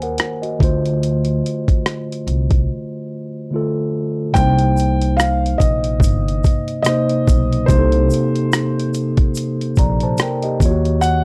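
A gritty, compressed sampler-style drum kit with a thumpy kick sits up front in this hazy, reflective lo-fi hip hop excerpt at 72 BPM in C dorian, joined by a woody pizzicato upright bass and a mellow tine electric piano, with a break from 2.7 to 4.3 seconds before a soft, felt-muted upright piano melody and a grainy tube shaker in the background enter at 4.3 and 4.4 seconds, all in a dry, gritty hardware sound.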